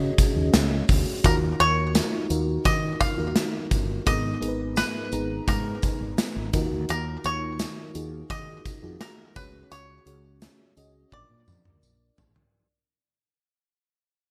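A straight 4/4 pulse at 85 BPM drives this moody, dramatic 1980s-style pop excerpt in Eb minor, where a twangy, fingerpicked bluegrass banjo carries the melody up front over a lush, dreamy FM electric piano with a soft pad layer and chorus, a round, dark fretless bass with analog chorus, a gated 80s drum kit with a punchy kick and gated reverb, and a very quiet, jingly tambourine, all in a bright digital production that fades out across the whole 12.5 seconds, with a drum fill arriving at 11.1 seconds as the chords move from Dbsus4 through Ebmadd9 and Abmadd9 to a closing Bb.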